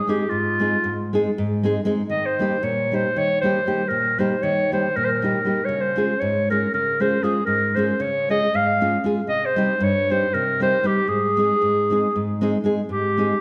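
Driven by a straight 7/8 pulse at 234 eighth-note beats per minute, this wild, virtuosic Balkan folk passage in Ab major is cut from a longer piece and moves through Ab, Eb, Db and Cm before returning to Ab. A clear, vintage-toned clarinet carries the melody up front in a classical style between F4 and F5, its lines touched by a slapback echo. Beneath it a full-bodied nylon-string guitar is fingerpicked with deep classical character from G2 to Ab4, and both sit in the wet reverb of a recital hall.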